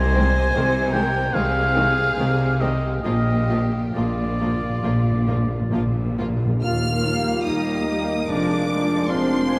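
Bathed in the long, wet reverb of a vast cathedral, this serene, tender slow romantic movement in Eb major drifts with rubato at 65-79 BPM as a lush violin section sings the melody over a second, smooth violin line, a clear up-front oboe, distant violas, focused cellos and intense double basses, while close timpani with medium mallets fill from 3.0 seconds and pure flutes, a clarinet, a mellow bassoon and dark, roomy French horns join at 6.6 seconds for the final bars of this fragment of a longer piece.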